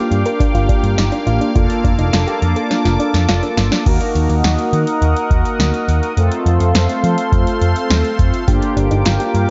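Mellow sawtooth synth brass, a detuned, resonant pad and a soft, nasal pluck arpeggio with chorus and digital delay open this upbeat yet wistful 104 BPM synth-pop excerpt, joined at once by a foam-muted, amped electric bass and an analog drum machine with deep kick, punchy snare and metallic hats, whose fill from 2.7 seconds leads the harmony from Gm7 and Bbmaj7/F into Ebm and F while the pluck falls away until it returns at 8.5 seconds, in a dark, lightly reverberant mix.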